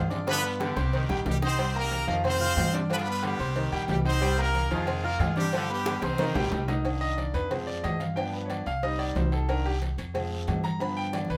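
A brilliant horn section with vibrato and octave doubling opens this passionate, danceable salsa excerpt up front over a bright concert grand piano and a woody, thumpy pizzicato upright bass, while a punchy, tight trombone section adds a second line in the background. Raspy guiro, hard-handed congas in a distant large room, round low-tuned cowbell and bongos, and ringing, vintage agogo bells and timbales sit behind the band, with drum fills breaking through along the way. After the horns and trombones drop out at 6.6 seconds, the polished, deep-bassed piano takes a solo from 6.8 seconds to the end over the C minor changes, all in a moderate studio reverb.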